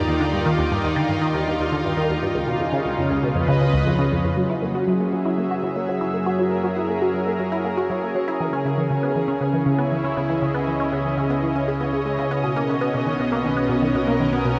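Ambient, sequencer-driven space music at 119 BPM in 4/4, mysterious and cosmic, cut from a longer piece and bathed in a huge, wet reverb as a lush, thick, warbling unison pad sustains bright chords up front, moving from Ebmaj7 through Db7 and F#7 to Bmaj7. A juicy, squelchy, resonant blip pluck runs its riff through phaser, delay, shimmer reverb and vintage 12-bit grit, while a nasal, evolving analog drone with a moving notch fades in underneath from 4.4 seconds as the bass. At 12.6 seconds a mellow, ringing vibraphone with soft mallets and fast motor vibrato enters in the background with delayed arpeggios.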